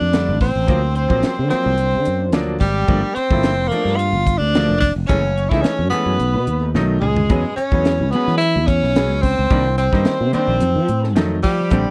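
A clear tenor saxophone carries the melody up front in this bright, soaring electric jazz fusion excerpt at 109 BPM in a straight 4/4, its soft-attacked notes scooped and touched with light vibrato. Beneath it, a sustaining fretless electric bass sits close and growly, bathed in lush chorus, while a crisp fusion drum kit with a high-tuned snare, punchy kick and rolled-off top drives the groove with hi-hat, kick, snare and toms, rounding off a fill between 6.8 and 7.3 seconds. A crunchy, double-tracked overdriven guitar traces a picked second line above the sax, and a brilliant baby grand piano fills in the harmony with long, natural sustain. At 7.3 seconds a very quiet, mellow electric guitar slips in with clean, fingered stabs. The harmony moves through rich extended chords from a rootless Bbmaj13 and D7alt to Gm9, Gbm9, B9 and E6 before closing on Cm7 and F7b9, all captured in a dry, close 1970s-style studio sound with light reverb.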